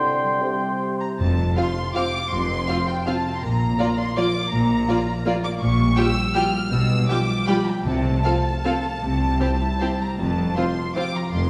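A sweeping, festive orchestral ballroom waltz in a rubato triple metre, cut from a longer piece, opens with brief woodwind lines from clear oboe, airy silver flute, a very quiet punchy clarinet and a mellow, distant bassoon over a ringing fingerpicked concert harp, which carries its arpeggios throughout. From 1.0 seconds the lush bowed strings take over, with the violin section carrying the melody high above, joined at 1.2 seconds by a rich cello and double bass foundation and at 1.6 seconds by a second violin line and focused viola accompaniment, while calf-headed timpani sound in the background at 1.2 and 7.9 seconds. The ensemble is heard from further back in a wet scoring-stage reverb, the harmony moving through a chromatic turn before settling home on F.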